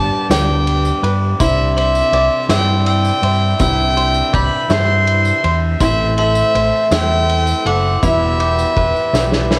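Bittersweet and stirring, this cut from a longer indie folk piece moves at 54 BPM in a straight 6/8, tuned to A4 = 436 Hz, with an earthy, up-front fiddle carrying the melody through cassette tape over a round, punchy fingered electric bass, a bell-like glockenspiel on brass mallets adding a second line through tape and analog delay, a shimmering octave-doubled twelve-string acoustic guitar, a twangy bluegrass banjo playing arpeggios, a very quiet, dark, slightly detuned upright piano and a floating sul tasto string section holding chords, while a loose, roomy drum kit and a jingly tambourine enter at 0.3 s, the whole home cassette recording set in light reverb as the chords move from G through Cadd9 and Am to Em before a drum fill at 9.1 s.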